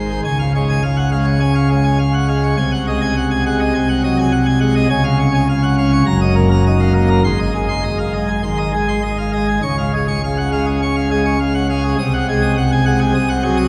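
Jubilant and majestic, this classical organ toccata excerpt in D-flat major at 102 BPM sets a solo pipe organ on full plenum, its brilliant mixtures and baroque voicing speaking with crisp chiff up front across a span from Gb1 to Eb6, while a cathedral reverb lingers around it as if heard from further back in the room, moving through Db, Ab7/C, Ebm/Gb, Ab and back to Db before landing on Ab7/C at 12.0 seconds.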